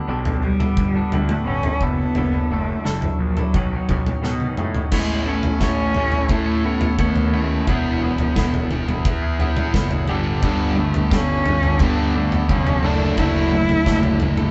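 Quiet-loud alternative rock at 87 BPM in a straight 4/4, restless and bittersweet, this cut from a longer piece opens with a twangy, clean electric guitar playing tremolo-treated arpeggios over a growly fuzz bass, an up-front, loose indie drum kit in a pumping small room, and a nasal, boxy cello carrying the melody with vibrato and portamento, moving through Gadd9, Dadd9/F# and Badd9. After a drum fill, a thick fuzz guitar riff arrives at 4.9 seconds as the harmony shifts to Aadd9 and Eadd9, and a bright distorted guitar riff joins in the background at 10.4 seconds. The band sounds like it is playing live in one room, with moderate reverb and a dark top end.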